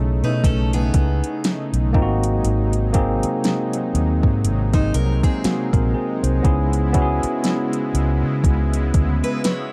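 Contemporary R&B at a slow 60 BPM with a swung sixteenth feel, longing and sensual, cut from a longer piece and moving from B13 to G#7 and then C#m7 at 6.4 seconds. A bright, clean tine electric piano and a smooth, detuned sawtooth analog pad with chorus and tremolo open together, while a round, foam-muted vintage fingered bass sits up front, a full-bodied jumbo steel-string acoustic guitar picks delayed arpeggios, and an overdriven electronic drum kit with a soft kick, fat snare and metallic hi-hats arrives at 0.4 seconds. The production is dark and dry, with little reverb, keeping the drums, bass and electric piano close and present.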